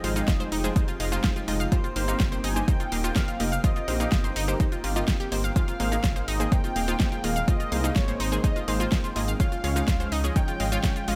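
A straight 4/4 pulse at 125 BPM drives this expansive progressive house excerpt, with a punchy, overdriven electronic kick sitting up front from 0.3 seconds and a deep house kit of fat snare, hi-hat and cabasa, while a dark, rumbling detuned saw bass pumps beneath chords moving from Fm7 through Cm7 and Abadd9 to Db. Two pluck layers ride that sidechain pumping: a round, chorused analog pluck spinning arpeggios with tape echo and a lush, punchy unison pluck firing stabs. Above them a thick, nasal unison lead carries the melody with vibrato and tape echo, over a very quiet airy pad with phaser and a faint glassy texture of drifting overtones, all set in a digital ambience.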